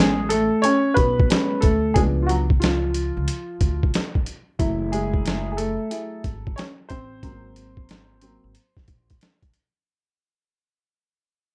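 Relaxed jazz-hop at 91 BPM with a lazy 16th-note swing, this fading hip hop excerpt puts a worn, slightly detuned upright piano with long sustain up front as the lead voice, moving through Amaj9, C#7b9, F#m7 and G#7 over a woody, dark gut-string upright bass and a gritty, compressed, pitched-down boom bap drum kit with a thumpy kick and medium-tuned snare, re-recorded in a large room, all set in small room ambience; piano and bass stop at 9.2 seconds while the drums carry on to 9.7.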